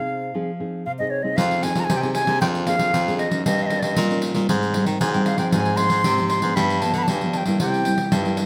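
A moderately reverberant studio sound frames this lively, nostalgic samba-choro in F minor at 116 BPM, cut from a longer piece. It opens with a 1.4-second break where an airy, close-miked wooden flute carries the melody with a tongued, expressive straight tone and plate reverb over warm, thumb-plucked classical nylon-string guitar. At 1.4 seconds a punchy, up-front baritone saxophone with vibrato takes the bass line and a jingly pandeiro joins, as the harmony moves from Fm7 through Abmaj7 to G7 and C7.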